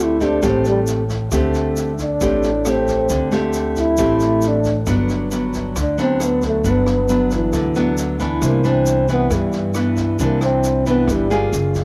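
A dark, breathy trombone with light vibrato carries the melody up front over a fingerpicked nylon-string guitar, woody pizzicato upright bass, an open jazz kit with rim clicks and a boomy kick, and a grainy egg shaker, giving this sunny, romantic bossa nova fragment a homespun cassette-tape softness on the trombone, guitar and drums in a lightly reverberant room as the chords move from D7sus4 to Gmaj7 at 4.9 seconds and Cmaj9 at 8.4 seconds.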